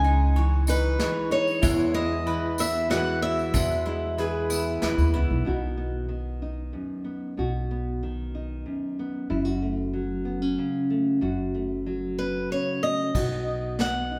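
A wet stone room gives this acoustic folk band a live, shared-space sound, as if the players stand together in one room. It's a peaceful piece in 3/4 with a straight feel, cut from a longer performance. A dark, fingerpicked nylon-string guitar and a woody pizzicato upright bass carry the whole passage, while a bright, boxy swing-style acoustic guitar picks the melody up front. In the opening section, a metallic, nasal resonator slide guitar adds a second line and a bowl-back mandolin picks double-string arpeggios. Soft brushes play a kit with a punchy kick, and a jingly, close tambourine sits low in the mix. Those parts drop out by about 5.5 seconds, leaving the nylon guitar and bass to carry the middle stretch, before the swing guitar returns at 12.2 seconds and the brushes come back briefly at 13.1 seconds.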